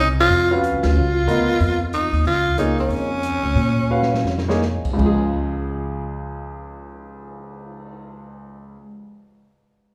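Bathed in the long, wet reverb of a recital hall, this short excerpt of hypnotic, open modal jazz swings in 4/4 before slowing down from 2.2 seconds. A raspy, growling tenor saxophone carries the melody with vibrato and scooped notes until 4.6 seconds, over a woody, up-front pizzicato upright bass and a natural-sounding grand piano accompaniment. The smooth drum kit, with its boomy kick, dark cymbals and rolled-off top, joins the whole band in an early accent and plays a fill just before the saxophone stops.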